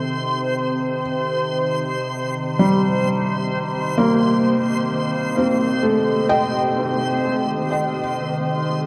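Ambient fragment, melancholic and spacious, in which a muted, intimate upright piano with audible action noise plays arpeggios up front through a diffuse delay, over a glassy FM pad fading in on sustained Cm chords, a resonant phased drone with moving overtones, and a reversed, swelling granular texture, dreamy and bright, inside a vast, echoing space.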